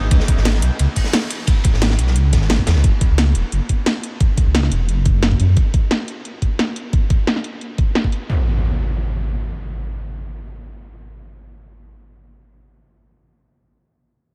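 Melancholic and soulful, this excerpt of straight 4/4 liquid drum and bass at 176 BPM rests on a menacing, detuned sawtooth bass with a filter swell, up front until 5.6 s, beneath a knocking, tape-warm electronic kick and a layered drum and bass kit of cracking snare and metallic hats heard through low-pass filtering, while a gritty, saturated acoustic breakbeat kit with a medium-tuned snare and rolled-off top adds brief high-passed crunch before an up-front electronic impact arrives at 8.3 s, set in light reverb.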